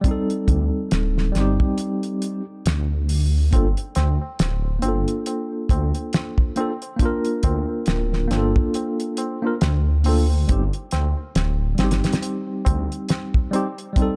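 A deep, rumbling detuned saw bass with a saturated, beating tone anchors this smoky, hypnotic trip hop excerpt at 69 BPM in G minor, alongside a dry 70s drum kit with a fat snare and tight kick, a clean tine electric piano through a combo amp carrying tremolo and tape echo over chords moving from Cm to Gm7 and back, and a low-tuned, ringing tabla that enters at 3.5 s, all framed by studio reverb in a dark, warm production.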